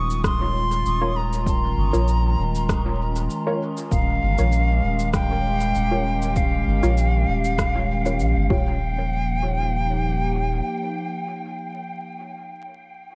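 Peaceful and spacious, this ambient dub piece, cut from a longer work, floats on a warbly, nostalgic tape-like pad with chorus and its own reverb, a deep, round sub bass held up front, and muted, phaser-treated chord stabs that enter at 1.0 seconds with dub echo. An airy, bright concert flute carries the melody with vibrato and echo trails, while a punchy electronic kick and an electronic cabasa and rim click in a small room give a gently swung pulse until about 8.6 seconds, as the harmony shifts from Bbm/Eb to Eb9. The bass drops out at 10.6 seconds, leaving the flute, pad and stabs in an echo-heavy, lightly reverberant mix dusted with vinyl crackle.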